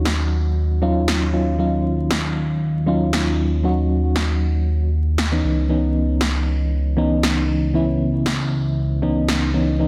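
A dense, heavily limited modern master with light studio reverb and a bed of vinyl crackle frames this short deep house cut, taken from a longer piece. It moves at 117 BPM in 4/4 with a gentle 54% swing on the sixteenths, sits in Eb phrygian, is tuned to A4 = 435 Hz, and carries a deep, warm mood. A mellow FM electric piano plays soft, round, warbling stabs with a vintage character and a noise layer, colored by chorus, tremolo and digital delay, as the harmony shifts from Ebm9 to Dbm9 at 5.4 seconds. Beneath it, a smooth, dark synth bass blends sawtooth and square tones into sustained notes with vibrato between Db2 and Eb2, thickened by tube saturation. An electronic snare with a punchy, tape-colored analog snap, re-recorded in a small room, enters at 0.1 seconds and stops at 9.4 seconds. All three parts sit up front in the mix.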